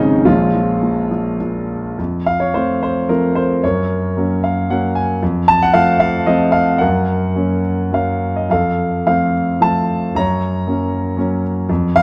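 A dark, intimate recording in a moderate recital hall reverb frames this moody, brooding classical solo for grand piano, which sits up front with a boxy tone, long sustain and audible action noise as it moves in a lyrical, rubato 3/4 at roughly 99 to 121 BPM from Bbm7 into a brooding sway between F and Gb, with a brief fill at 4.2 seconds before the passage is cut off at 12.0 seconds.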